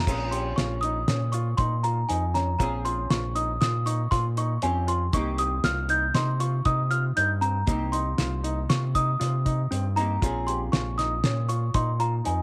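Driving along in a straight 5/4 at 118 BPM, this tense progressive instrumental in Bb dorian, cut from a longer piece, sets a bell-like, delicate celesta melody over an overdriven, round, up-front fingered electric bass, a cloth-damped, thuddy drum kit with a fat snare and tight kick, warm grand piano arpeggios, a dark, clean, double-tracked archtop guitar tucked in the background, and a grainy tube shaker that drops out at 11.7 seconds, all moving between Bbm7 and Cm7 in light reverb.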